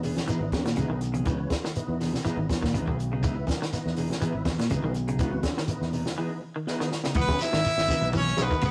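A driving, funky afrobeat groove at 122 BPM with a lightly swung 16th feel in C# minor rides on a dry, up-front cocktail drum kit with punchy kick and high-tuned snare, round fingered electric bass, grainy shekere and distant, low-tuned congas, while twangy clean guitar stabs, bright semi-hollow guitar arpeggios with slapback echo and a thick tonewheel organ through slow rotary speaker, overdrive and chorus vibrato sit in the background over a C#m9 chord, until a drum fill at 6.7 seconds leads into the entry at 7.2 seconds of a brilliant, forceful trumpet melody and a breathy, raspy tenor saxophone second line as the guitar stabs stop, captured in a rough rehearsal room with moderate stone reverb in this short cut from a longer piece.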